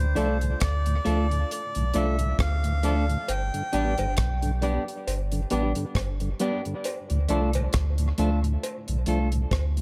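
Light studio reverb gives this heavy, spacious dub reggae excerpt an open, airy setting. A reedy, breathy melodica carries the melody at the start, trailing dub echo and falling silent at 4.1 seconds. Underneath sits a round, sine-like sub bass that stays deep and up front. A fat tonewheel organ with key click, chorus vibrato and slow rotary speaker lingers in the background. A clean, picked electric guitar and a barky, gritty reed electric piano with fast tremolo add stabs and accompaniment, both soaked in echo. A dry, acoustic reggae kit with a tight kick, hi-hat and rim click plays through the opening break, and a compressed, saturated cowbell joins at 3.3 seconds as the harmony moves from D minor to G and back to D minor.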